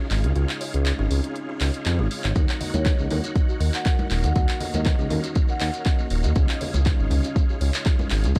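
A hypnotic, spiritual afro house groove at 120 BPM in 4/4 with a light swing on the sixteenths, set in Eb minor and moving from Dbadd9 to Ebm7 and back to Dbadd9 at 6.4 seconds. A smooth, up-front synth bass with a ring-modulated, mellow edge pumps against the sidechain under a deep house kit of handclaps and dark hi-hats, while the deep, layered electronic kick joins at 2.4 seconds alongside ringing, close congas and a grainy, band-limited shekere tucked in the background. A buzzing kalimba plays woody, thumbnail-plucked arpeggios through analog delay, and an overdriven tonewheel organ adds thick, gritty stabs swirled by chorus vibrato and a fast rotary speaker. A very quiet analog pad holds dark, sustained chords with a slow attack, and a marimba with medium hard mallets slips in a brief background melody from 2.7 to 5.7 seconds. The whole cut has the dry, cassette-tape grit of a small room, and it is taken from a longer piece.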